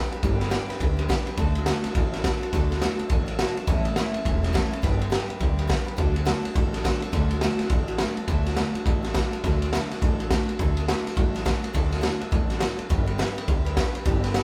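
A swung 4/4 at 208 BPM drives this upbeat, retro rockabilly excerpt in D major, moving through G, D and A chords and passing into a new section at 8.3 seconds. A raw garage drum kit sits up front with a boomy kick, a medium-tuned snare and dark cymbals, its gritty, saturated sound pumping in a small room with a rolled-off top. Beneath it, a pizzicato upright bass on gut strings adds a woody, thumpy low end, while a bright, full-bodied picked dreadnought acoustic guitar carries the accompaniment, and light reverb gives the feel of a band playing live together in one room.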